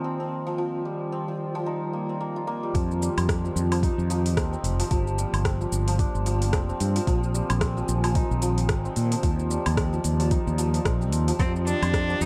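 Meditative and mystical, this organic downtempo excerpt at 111 BPM in F dorian, with a swung 16th-note feel, opens on a warbling lo-fi pad of sustained chords with chorus and sidechain pumping beneath shimmering, ringing santur arpeggios with tape echo, before a round, dark fretless electric bass and a soft overdriven electronic kick enter at 2.7 seconds, joined a moment later by a layered deep house kit of metallic hats, rim click, shaker and woodblock, and a clear, focused bowed cello melody with vibrato arrives at 11.4 seconds in a dark production with light reverb.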